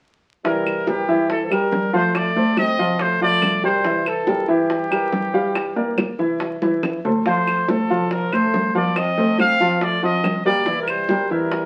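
Danceable and sunny, this Afro-Cuban jazz excerpt in C mixolydian moves at 141 BPM in a straight 4/4, with a distant, roomy trumpet carrying the melody up front over an intimate baby grand piano with audible action noise, a veiled cup-muted trombone as second line in the background, a very quiet pizzicato upright bass with steel strings, ringing congas, round low-tuned bongos and woody claves, all heard through wet studio reverb and the crackle of a very old 78 rpm record, with a drum fill at 6.6 seconds over chords moving from C7 through F7 and Gm7.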